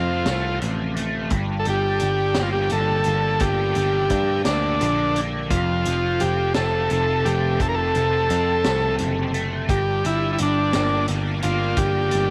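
A slow 6/8 pulse at 57 BPM, felt in dotted quarters, gives this psychedelic rock excerpt in G dorian a hypnotic, trippy sway, with a vintage drum kit entering at 0.3 s with hi-hat, punchy kick and a high-tuned snare under a rolled-off top. Beneath it, a picked electric bass sits up front with a growly, foam-muted bite, anchoring the harmony as it alternates between F and G minor. A buzzy combo organ carries the melody in a clean, forward voice with light vibrato, trailed by tape echo. A double-tracked, overdriven guitar plays a biting riff through a rotary speaker, while a distant chamber string section holds very quiet sustained chords with a reedy, gut-string period tone. Moderate spring reverb and small room ambience lend the whole 12.3 seconds a slightly hazy glow.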